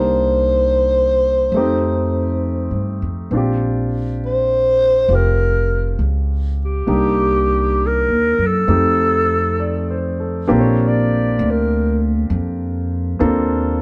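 A tender, romantic jazz ballad with a gentle swing, cut from a longer piece, where a growling, raspy clarinet carries the melody up front with vibrato and scooped notes, taking a solo from 10.5 seconds until it stops at 12.1 seconds. A warm concert grand piano with deep bass supports it over a Cm7, F9 and Bb6 progression, while a woody, pizzicato upright bass plays underneath. The trio plays live in one room with light reverb, and the piano and bass carry on to the end at 13.8 seconds.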